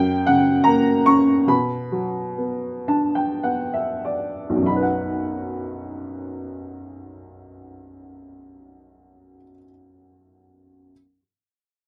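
Wistful and dark, this short classical passage for solo piano unfolds in a lyrical, rubato waltz time, cut from a longer piece. A single upright piano carries everything, its tone woody and boxy, its playing reaching from low B1 up to C#6, placed up front and heard through close, detailed microphones with light reverb. Over the first 4.7 seconds the music slows, with a piano fill stretching from 2.4 to 4.7 seconds as the harmony moves from F# to Bm. A second section then opens on a B chord at 4.7 seconds. The piano sounds until 10.9 seconds, leaving an intimate, melancholy impression.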